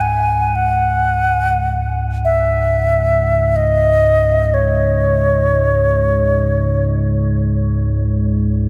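A bright, reedy xiao sings an airy, vibrato-laden melody up front over a deep, rumbling drone whose dark, ominous tone carries its own reverb, while soft crotales shimmer with bell-like ringing in the background. This meditative world piece floats in free time within a huge ambient space, its spacious mood cut from a longer work. The xiao falls away at 6.8 seconds, the crotales fade at 8.1 seconds, and the drone sustains to the close at 8.7 seconds.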